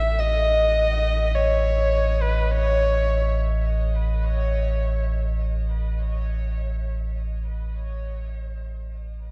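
Ambient music in free time and A lydian, tuned to A4 = 441 Hz, with a serene, warm mood, cut from a longer piece. An amplified electric violin, played by one bowed player, carries the melody up front between B4 and E5, smooth and even with vibrato and portamento, before stopping at 3.4 s. A vibraphone struck with medium mallets sits in the background, ringing out metallic arpeggios on D#5 with a fast motor vibrato, and fades out across the full 9.3 s. Beneath them, a round analog bass holds a deep, sustained A1 up front, its sawtooth and sine tone given a fast attack and tube saturation, and it fades out as well. The violin and vibraphone each trail a diffuse ambient delay, and a wet scoring-stage reverb of 2.0 s wraps the dark production.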